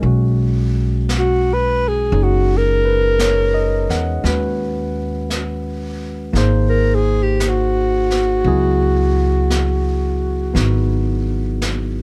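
A breathy, close-miked alto saxophone carries this intimate, melancholic jazz ballad, entering at 1.2 seconds with a mellow subtone, soft attack and gentle vibrato, and falling silent at 10.6 seconds. Beneath it, a barky, bright tine electric piano comps cleanly while a woody, thumpy upright bass with gut strings sits up front, and a distant brush kit on snare and hi-hat adds a roomy, small-room texture to the slow swung pulse. The dry sound keeps the moment close as the harmony drifts from B6 through G#7 to C#m9 in this short cut from a longer piece.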